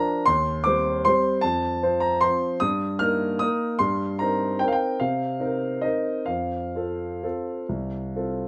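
A warm concert grand piano plays alone, up front, in a sparkling, graceful classical waltz in 3/4 with free rubato between 124 and 164 BPM. Its deep bass, open tone and long sustain span C2 to F6 in light reverb across this 8.5-second fragment of a longer piece, tuned to A4 = 441 Hz, as harmonies move from Cm/Eb through F, Eb/G and Cm7/G before settling back on F.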